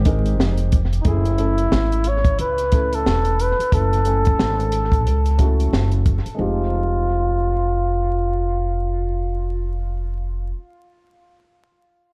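A small, echo-heavy room wraps this nocturnal, mellow jazz-hop clip, with vinyl crackle sitting over the whole mix. A woody, thumpy pizzicato upright bass is placed up front, and a dark upright piano plays filtered accompaniment, its intimate, vintage tone carrying audible action noise. A compact cocktail drum kit, with a punchy kick, high-tuned snare and hi-hat, keeps a lightly swung groove with a rolled-off top until it drops out at 6.4 seconds. From 1.0 seconds a breathy flugelhorn carries the solo melody, its scooped notes and vibrato softened by a low-pass filter and trailing dub echo. The harmony moves from Fm7 to Gbm9 before settling on Fm9 as the drums fall away, leaving bass, piano and horn to close out this cut from a longer piece.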